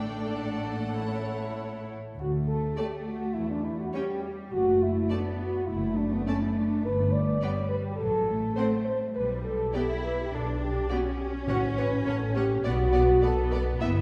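Mellow French horns hold sustained chords up front in this lively, graceful classical-period orchestral passage, cut from a longer piece, while lush violins carry the melody in the background and a second violin line, clear violas, rich cellos and smooth double basses fill out the bowed texture, with very quiet timpani entering briefly at 11.5 seconds, all set back in the wet reverb of a scoring stage.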